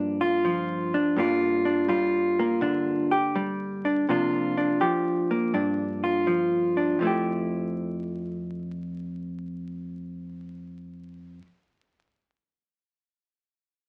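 Solo jazz at a relaxed, swinging 82 BPM in F major, this brief cut from a longer piece features a dark, clean, compressed hollow-body electric guitar picked up front, moving from a rootless C9sus4 to a settling Fmaj9 at 7.0 seconds, heard through a wet studio ambience and the crackle of a very old 78 rpm record.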